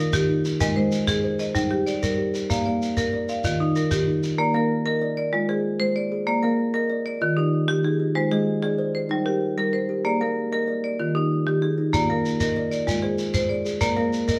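A bright, percussive marimba struck with hard mallets sits up front in this hypnotic fragment of southern African traditional music, cycling through interlocking mbira-style arpeggios from Eb3 to F5. Beneath it, a kalimba shares the same range with a woody, hollow-box tone and a soft fingertip pluck, its dark, ringing notes giving the cycle a mellow, warm glow. A grainy, distant shekere adds percussion at the start, drops away at 4.4 s, and returns at 11.9 s as if from a large room. The music moves in a straight 12/8 at 127 BPM counted in dotted quarters, centred on Bb mixolydian and circling chords such as Eb, Ab, Gm and Bb. The players sound live together in one studio, softened by a wet reverb.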